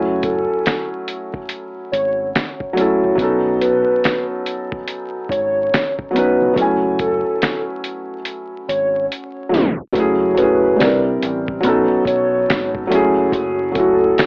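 Hazy and reflective, this short lo-fi hip hop excerpt sets a muted, intimate upright piano with cassette-tape character up front beside a thumpy, pitched-down sampler kit of finger snaps, hi-hat, kick and fat snare, a round, dark dub bass, and a warbling, detuned lead coloured by chorus, tremolo and tape echo, all wrapped in vinyl crackle and AM-radio haze, with a drum fill from 9.1 s and a tape stop at 9.5 s easing into a shift to F# minor.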